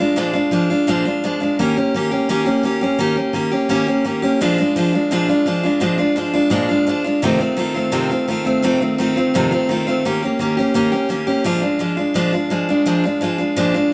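Driving along at 170 BPM in a straight 4/4, this rowdy, upbeat rock excerpt is carried entirely by a single picked steel-string acoustic guitar playing solo from start to finish across its 13.9 seconds. The guitar sits up front with a bright, full-bodied dreadnought tone and the crisp ring of fresh strings, ranging from F2 up to G4. Set in Bb mixolydian with a tuning slightly below standard pitch, it moves through a bluesy dominant-seventh progression of Bb7, Eb7 and F7, landing back on Bb7 at 11.4 seconds. A moderate large-studio reverb gives the sound the open feel of a band playing live together in one room. Lifted from a longer piece, the passage repeats its main section briefly at 12.9 seconds before it cuts off.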